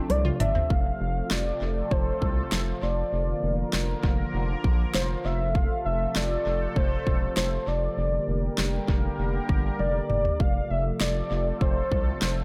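A brief detuned analog pluck arpeggio glimmers over a velvety synth lead and a sweeping, resonant pad as a drum fill kicks off this upbeat yet wistful synth-pop excerpt, with the pluck dropping away by 0.6 s. A smooth, sawtooth-edged lead with vibrato and portamento carries the melody through chorus and analog delay, while the evolving pad sustains chords over a steady F pedal and a round, deep analog bass holds the low end up front. The punchy, layered electronic kit, with fat snare and bright hats, adds another fill at 9.8 s, all set in light reverb and an echo-heavy digital ambience.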